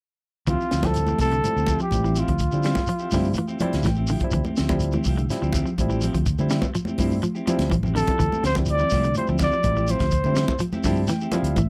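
A breathy, whispered trumpet carries the melody from 0.5 seconds over a funky, driving afrobeat groove of picked clean electric guitar arpeggios with tremolo, spring-reverbed guitar stabs, a round fingered electric bass, a punchy compact cocktail drum kit and grainy shekere, joined at 0.8 seconds by barky, lightly overdriven tine electric piano and hard-handed, high-tuned congas, with the piano adding a fill as the trumpet drops out at 10.6 seconds in this dry, close 1970s-style studio recording cut from a longer piece.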